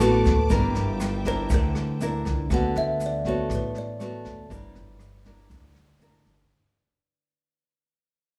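A ringing kalimba with a hollow, woody thumbnail pluck carries the melody from 1.3 to 3.9 seconds in this sophisticated, romantic bossa nova fragment, set over an up-front, fresh-stringed fingerpicked nylon-string guitar, a pizzicato upright bass, a vintage brush kit with punchy kick, rim click and rolled-off top, a grainy shaker in the background, and a lush, vibrato-rich bowed string section that holds chords only until 2.5 seconds, with the harmony shifting between D6 and Gm6 in a light small-room reverb as the music fades out.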